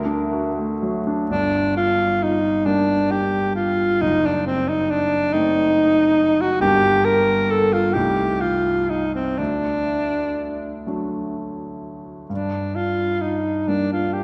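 Romantic classical music for alto saxophone and grand piano, this elegiac, yearning passage is cut from a longer piece and moves slowly in a rubato 6/8, at roughly 39-47 BPM counted in dotted quarters, in G minor. The alto saxophone carries the melody throughout in a classical style, its clear tone shaded with vibrato and a smooth top, sitting up front as the solo voice between C4 and Bb4. Beneath it, the grand piano accompanies from F#1 to F#4 with an intimate, polished sound and long sustain, also present and close, with the action noise of the instrument audible. The harmony opens on D, settles on G minor at 1.3 seconds, passes through darker diminished colours such as F#dim7 and Adim/C, and returns to D before resolving to G minor at 12.3 seconds. A wet scoring-stage reverb with a 2.0-second decay places the pair further back in the room, lending the duo a spacious, mournful glow.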